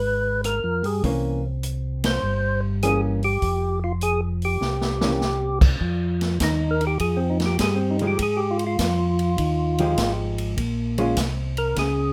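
A light reverb gives this soul jazz organ trio excerpt a late-night, soulful glow, swinging in F minor at 101 BPM with a fat, lightly overdriven tonewheel organ carrying the melody through a slow rotary speaker while a smooth second organ voice holds down the bass. A punchy, up-front big-band drum kit enters at 0.4 seconds with crash, ride, hi-hat, rim click and a medium-tuned snare, and a dark, clean hollow-body jazz guitar comps from 1.0 seconds over chords moving from a rootless Db7 through C7b9 to Fmadd9. After a band accent and a short drum fill, the organ takes a solo at 5.8 seconds over Fm9 and then Bbm7.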